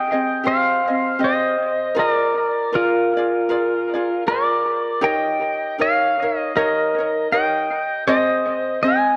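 Dreamy and sunny, this brief Hawaiian excerpt in Ab major sways at 79 BPM with a gentle swing, as an up-front electric pedal steel guitar carries the melody with a twangy, clean tone, fingerpicked slides and volume swells, over a mellow, lightly fingerpicked acoustic ukulele, both bathed in analog delay and a moderate spring reverb in an echo-heavy mix that moves from Abmaj7 through Bb7 and Eb7 to settle on Ab at 8.1 seconds.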